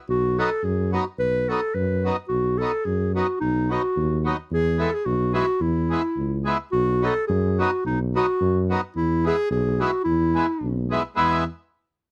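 Bouncy and jolly, this short excerpt of alpine folk dance music moves at 108 BPM in a lightly swung 2/4 with a touch of rubato, set in E major and shifting between B and E chords. A dark, classically styled clarinet carries the melody up front while a smooth-topped tuba with light vibrato holds down the bass from the first moment, and a reedy, full accordion joins at 0.4 seconds with rich, mid-forward accompaniment. The close, detailed sound has little reverb, placing the small band intimately near the listener as the phrase moves from its opening section into a second at 6.7 seconds.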